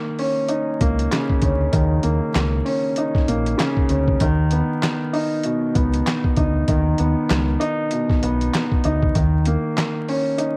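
A dark, mellow grand piano opens this brief boom-bap hip-hop excerpt at 0.0 seconds, sitting up front with a cassette-tape tone and filtering at both ends of its register as it accompanies in a low-to-middle range. A sampler-style drum kit arrives at 0.2 seconds, compressed, pitched down and gritty, with a thumpy kick, a medium-tuned snare, hi-hat and handclaps carrying a tape-warm grit close to the listener. At 0.8 seconds a deep, round fingered electric bass joins, direct and amped in its low register, and it drops out before the drums and piano end. The 97 BPM groove in 4/4 swings its sixteenths, and the harmony moves from Eb5 to B and back to Eb5, tuned slightly below standard pitch. Vinyl crackle and a dry, home-cassette sound give the whole cut a dark, reflective, intimate character.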